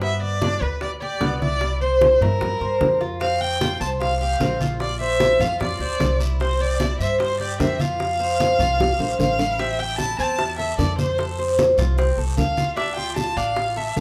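A straight 4/4 pulse at 150 BPM drives this sunny, danceable Cuban son and guajira excerpt in F major, where an expressive, bowed violin sings the melody with vibrato and portamento over picked, metallic double-string tres arpeggios, a woody, thumpy pizzicato upright bass, tight high-tuned bongos, damped, saturated low-tuned congas and a raspy guiro entering at 3.2 s, all set in a moderate large-studio reverb, with a drum fill at 8.8 s leading into a new section at 9.6 s.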